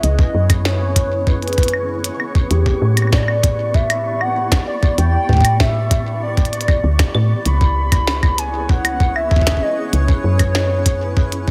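A gritty, thumpy electronic kick drum sits up front in this melancholic, cerebral IDM excerpt at 97 BPM in a straight 4/4, its compressed, pitched-up sampler character carrying a tape-warm edge from 0.2 seconds onward. Around it, a glitchy electronic kit of claves, clicky hats and a tiny snare sounds re-recorded in a large room, while a woody FM bass, soft, round and dark with a fast, decaying attack, anchors the low end. Over this, a warbling, nostalgic lead carries the melody between G4 and B5, its detuned triangle and sawtooth blend softened by vibrato, lush chorus, cassette tape coloring and digital delay. A cloudy granular pad holds blurred, evolving sustained chords beneath, and a flickering, grainy texture stays in the background with reverb and sidechain pumping. The harmony moves from C#m7 to Em7 at 2.5 seconds and back to C#m7 at 7.5 seconds, all within a light reverb and digital ambience.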